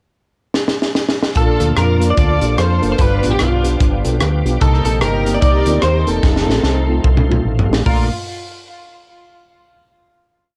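Hopeful and uplifting, this short uptempo gospel piece at 148 BPM in Bb major swings on a crisp fusion drum kit that opens with a fill at 0.5 s before settling into a punchy, high-tuned two-beat praise groove, joined at 1.4 s by a deep, round dub bass walking with chromatic approach notes and tube saturation, off-beat mellow tine electric piano chords, a reedy tonewheel organ pad spun through a fast rotary speaker with key click, a very quiet soft-attack French horn pad, and lush bowed string call phrases with analog delay set against picked, compressed song phrases on clean electric guitar with analog chorus, in a dry home cassette recording that lands on a Bbmaj7 chord at 7.9 s.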